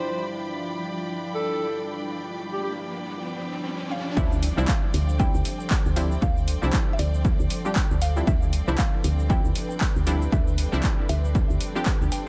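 A breathy, whispered alto saxophone opens this moody, late-night deep house excerpt in D dorian at 117 BPM, its intimate jazz-style phrase with light vibrato and analog delay ending at 2.7 seconds over a dark, evolving analog pad with chorus and a lush, bowed studio string section, both pumping to the sidechain, while an electronic riser builds. At 4.2 seconds the drop arrives on a Dm11 chord, bringing an up-front, overdriven electronic kick, a soft, round, woody FM bass, muted filtered dub chord stabs with chorus and delay, and a punchy, overdriven analog drum machine with cabasa, handclaps and hi-hat trailing dub echo, all swung on the 16ths. A mellow, mallet-like synth pluck with phaser and tape echo sits in the background, and the whole mix is steeped in echo-heavy digital ambience.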